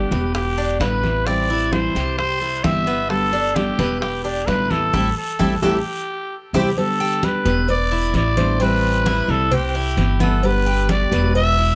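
Sunny and relaxed, this clip of Cuban son and guajira features a gritty, growling trumpet up front, carrying the melody with scooped notes and a vintage tape echo, over a woody, thumpy upright bass on gut strings. A fingerpicked nylon-string guitar with a deep classical tone and a metallic, double-strung Cuban tres supply accompaniment and arpeggios, while ringing congas and tight high-tuned bongos and cowbell sit dry in the background alongside a raspy guiro. The band hits an accent from 4.9 to 6.8 seconds, with a drum fill starting at 5.9 seconds that leads into the second section, all within a light reverb.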